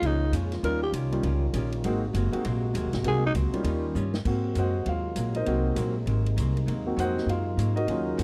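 A swinging 4/4 pulse at 199 BPM drives this brassy big band jazz fragment in Ab mixolydian, cut from a longer piece. The upright bass sits up front with a woody, thumpy pizzicato tone, while the drum kit swings beneath it with a punchy kick, a medium-tuned snare, hi-hat, ride and crash, and closes the first half with a short fill. A growling tenor saxophone leads with brief, breathy subtone phrases, raspy and gritty at the edges, with scooped notes and vibrato. A baby grand piano joins at 0.6 seconds with a warm, natural, long-sustaining sound and takes over the solo at 4.3 seconds. In the background, a tight trombone section holds warm, vibrato-laden chords, and a dark, clean, compressed hollow-body archtop guitar comps quietly through changes that move from Bbm7 to Eb9 and Ab9. The sound is dry and close, like a small 1970s studio room.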